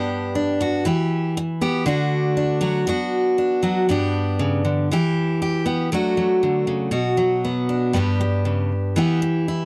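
Danceable and warm, this short excerpt from a longer highlife piece moves at 118 BPM in a straight 4/4 feel, centred on D major. A lone picked steel-string acoustic guitar carries the whole passage, its jumbo body giving a bright, full-bodied tone that sits up front in the mix. The guitar ranges from G2 up to G4 and cycles through G, Em, D and Bm, with the chords changing roughly every second. The first section runs to 5.9 seconds, after which a second section continues the same progression through to the close at 9.7 seconds. A light reverb touches the guitar, while the overall sound is dry and close, in the manner of a 1970s studio recording.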